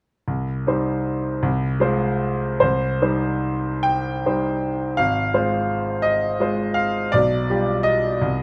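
Set in a rubato 6/8 at roughly 47-57 BPM counted in dotted quarters, this passionate, bittersweet romantic character piece in C minor, tuned to A4 = 441 Hz and cut from a longer work, features a solo grand piano with a brilliant, smooth, vintage tone and long sustain, placed up front in close, detailed sound with light reverb, ranging from Ab1 to G5 as it moves from C minor through F minor harmonies to a new section at 2.6 seconds and arrives on G7 over B at 7.1 seconds.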